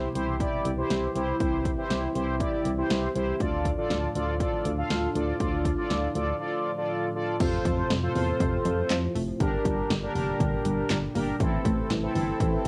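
Through a tape-softened home cassette sound with moderate reverb, this nostalgic, bright synth-pop fragment sets bold, brassy analog synth brass up front over a swirling phased pad, a round FM bass and a punchy analog drum machine with crash, handclaps, hi-hat, kick and snare, and a detuned analog pluck adds chorused, delayed arpeggios in the background from 7.4 seconds.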